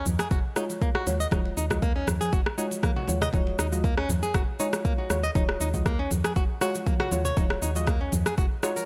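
Set in a digital ambience, this driving afro house excerpt rides on an overdriven, up-front electronic kick and an overdriven afro-pop drum kit of rim clicks, shaker and toms, with bright, damped congas in the background, a round, woody FM bass pumping to the sidechain, sidechained flamenco guitar arpeggios fingerpicked with audible finger squeak and delay, and nasal, full-bodied chord stabs with chorus, delay and sidechain pumping arriving at 0.6 seconds.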